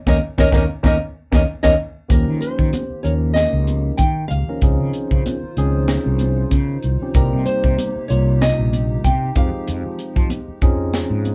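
A tight, dry funk drum kit with a high-tuned snare drives a bright, funky electric jazz fusion groove at 95 BPM in 4/4, swung lightly on the 16ths, as very quiet, damped congas and a growly, amped fretless bass sit alongside it in Eb mixolydian. The piece opens on a band accent, with a barky, clean tine electric piano fill from 0.8 seconds, and the piano then comps through chords such as Eb7, Dbmaj9 and Cm7 beneath a full-bodied, fingerpicked nylon-string guitar melody that runs until 10.6 seconds. From 2.8 seconds a hollow, flute-like pad with chorus holds soft chords in the background, all in a small room with a live-band feel.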